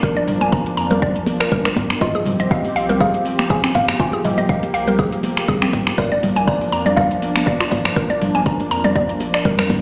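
Afro house with a driving, earthy mood, cut from a longer piece, built on an overdriven electronic kick and a deep house kit of cabasa, finger snaps, metallic hi-hats and toms, with bright, high-tuned congas played by hard hands close and dry. A round, dark analog bass sits in the background under a smooth, warbling vintage pad of detuned saws. A woody, mallet-like synth pluck runs arpeggios through chorus, cassette-tape colour and dub echo, and all three pump against the kick. From 2.0 s a hollow, thumb-plucked kalimba melody joins, drifting in dub echo over the chords. The whole mix sounds as if played on a big sound system in a bare stone room yet heard through a small speaker.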